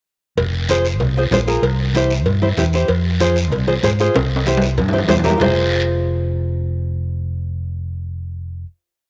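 Cumbia with a fiery, driving feel, this short whole piece moves along a straight four-beat groove that alternates between F minor and C before settling on a final F minor chord at 5.4 seconds. A dark, round fingered electric bass sits up front with an amped cumbia figure, while a small, fingerpicked nylon-string guitar with fresh strings plays rhythmic triad chords, carrying on until the close. The percussion bed pairs a ringing cowbell and metal-shelled timbales, close and dry, with very quiet, low-tuned congas played with soft hands on the off-beats and a raspy guiro scraping long and short strokes. A drum fill from 4.1 seconds leads into the final chord, where the percussion drops away and the bass and guitar ring out together. A moderate echo-chamber reverb gives the whole mix a roomy glow.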